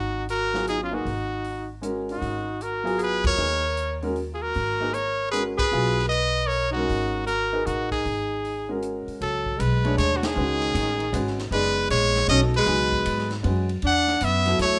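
A brilliant, forceful trumpet melody with light vibrato and scooped notes leads from the start over a breathy, subtone alto saxophone second line and a woody, thumpy pizzicato upright bass, joined at 0.3 s by a vintage drum kit with a punchy kick and rolled-off top and at 0.5 s by smooth grand piano accompaniment, in a spiritual, hypnotic modal jazz excerpt at 155 BPM in swung 3/4 that shifts from G# dorian to C# minor at 9.2 s, with band accents set in a moderate studio reverb.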